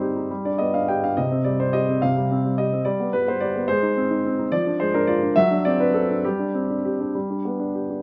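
Elegant and dramatic, this short excerpt from a classical-period piano sonatina unfolds in a lilting 6/8 at about 71 beats per minute, counted in dotted quarters, with uneven beats and a free, rubato feel. A solo baby grand piano carries the whole 8 seconds, ranging from C3 up to G5, its tone warm and natural and placed up front. The harmony opens on G and touches a C before darkening through Ab, a diminished chord over F and a D7 over F#. A Gsus4 at 6.3 seconds holds the tension briefly before settling back onto G at 7.2 seconds. Moderate recital hall reverb, lasting about 1.5 seconds, gives the instrument a sense of space around it, and the tuning sits slightly high at A4 = 441 Hz.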